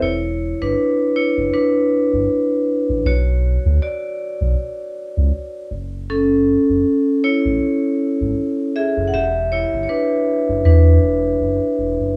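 A melancholic, nostalgic lo-fi hip hop excerpt opens with vibraphone and round analog bass together. The vibraphone's metallic, ringing, airy tone is softened by a low-pass filter and played with medium hard mallets and the motor off, and it carries a solo through the whole 12.2 seconds. Beneath it, the bass sits up front with a deep, dark, sustained sound and a detuned, sine-like body with a fast attack. A lightly swung groove moves through Em7, Bmadd9, F#m9 and Em9 inside a wet studio reverb.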